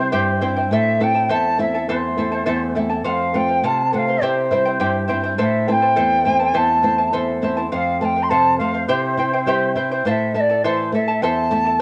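The reedy large quena, charango and flamenco guitar all begin together at the start of this short, festive yet wistful Andean folk excerpt in a straight two-beat metre. The end-blown wooden quena carries the melody with an airy, tongued tone and vibrato, sitting distant in the mix. Close at hand, the charango fingerpicks a bright, shimmering accompaniment on its double strings, some of them octave-doubled, while the flamenco guitar adds a dark, fingerpicked flamenco-flavoured lower accompaniment. The harmony circles through C, A minor and F across two matching passages, the second beginning at 7.7 seconds. A wet spring reverb and small-room ambience surround the homemade sound, and all three parts carry the grain of cassette tape.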